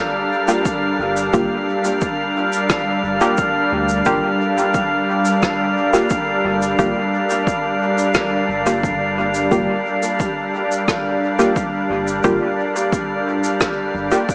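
A soft, organ-like pad with ensemble chorus and vintage 12-bit sampler grit opens this spacious, deep ambient dub excerpt beside a drifting, glassy harmonics texture, before muted, detuned dub chord stabs and a rolled-off shaker and rim click, both trailing dub echo, arrive at 0.5 seconds, followed by an overdriven, punchy electronic kick at 0.7 seconds and a round, dark analog bass at 1.0 seconds, the whole passage resting on a single Gm7 chord in an echo-heavy mix with plate reverb and a small-speaker sound.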